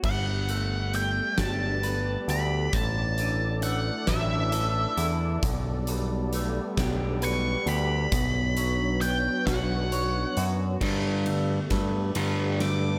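Euphoric and hopeful, this slow 45 BPM post-rock excerpt in 6/8 and G lydian sets an up-front fuzz-drenched lead guitar melody with slapback echo over a growling overdriven bass, twangy lo-fi arpeggios from a guitar through a small old amp, an airy detuned sawtooth pad in the background, and a huge arena drum kit with a fat snare and bright cymbals, moving through Gadd9, Asus4, Gadd9/B and Bmadd9 until a crunchy overdriven guitar riff enters at 10.8 seconds alongside a drum fill that builds toward the end.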